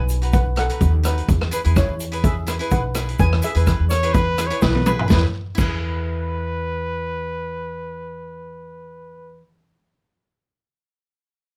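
Closely miked with light reverb, this festive, sunny calypso opens on a shimmering, mellow steel pan lead bathed in plate reverb, over crisp picked cavaquinho, a woody pizzicato upright bass, a boomy street-band drum kit with dark cymbals, and a grainy egg shaker in the background. From 3.9 seconds a smooth-topped trumpet with light vibrato takes up a classical-style second line, and the pan stops at 4.1 seconds. A drum fill at 4.6 seconds leads into the second section, where the drums and shaker drop out at 5.7 seconds and the trumpet, cavaquinho and bass carry the excerpt to its end.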